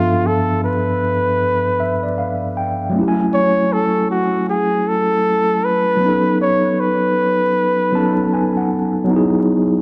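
Nostalgic and melancholic, this hip hop fragment at 78 BPM in 4/4 swings its sixteenths, setting a veiled, bucket-muted trumpet melody against a mellow, clean tine electric piano heard through its built-in speakers. The jazz-styled trumpet, with vibrato, scooped notes and analog delay, sits up front beside the piano and stops at 8.7 seconds, while the piano adds fills at 1.4 and 7.6 seconds and moves through G13, F#m7 and B7 to Emaj7. Light reverb, heavy echo and vinyl crackle frame the pair.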